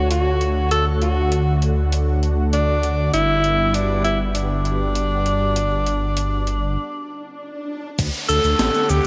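Synthwave at 99 BPM in D major, this short cut from a longer piece feels nostalgic and uplifting, moving between Dmaj7 and Gmaj7. A mellow tenor saxophone carries the melody up front, its subtone and smooth top touched with light vibrato and a digital delay, over a silky, string-like analog pad whose sustained chords breathe with ensemble chorus and sidechain pumping. Underneath, a dark detuned saw bass rumbles deep and beating, while a gated 80s digital drum machine plays cabasa, hi-hat, snare and crash cymbal with a tape-warm, sampler-style character and a gated reverb snare. After a break at 6.8 seconds, a swell and downlifter enter at 7.1 seconds, a thumpy electronic kick lands at 8.0 seconds as the chords return to Dmaj7, and an airy, dreamy lead slips in softly in the background with chorus and vintage 12-bit sampler grit. The whole mix sits in a lush hall reverb with a bright 1980s-style digital sheen.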